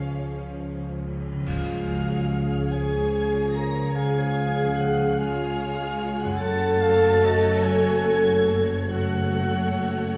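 This cinematic film score excerpt for orchestra is tender and moving, unfolding slowly in 6/8 at 48 BPM with a rubato feel in Db major, and the harmony shifts from Db to Gb minor at 6.4 seconds. A smooth, vibrato-rich studio violin section carries the melody high above the ensemble, while a soft-attack solo clarinet and a lush symphonic violin section in the background trace second lines beneath it. Violas fill in the accompaniment, a close-miked French horn section holds tight, mellow sustained chords that sit prominently in the texture, and a very quiet, ringing harp adds fingerpicked arpeggios. Woody double basses and even-toned cellos anchor the bass. At 1.5 seconds a pure, hollow silver flute joins with another second line, and dark cymbals with concert bass drum mark a brief accent that ends by 3.1 seconds. The whole sits in a wet scoring-stage reverb with a faint mains hum in the small room ambience.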